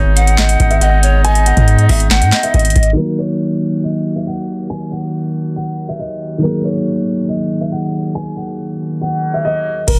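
A dense, heavily limited mix in a small room carries this dark, hard-hitting trap fragment with a half-time feel. A dark, vintage grand piano with audible action noise plays the delayed melody over tight, warm classical-style woodwind chords, while an airy bamboo pan flute with chiff and vibrato adds a second line, and a deep, up-front 808-style bass and booming analog drum machine with metallic hats and a tonal snare hit hard until about 3 seconds. A filter sweep then runs as a soft, thick-felt upright piano takes up the accompaniment, with the bass and drums returning at 9.9 seconds.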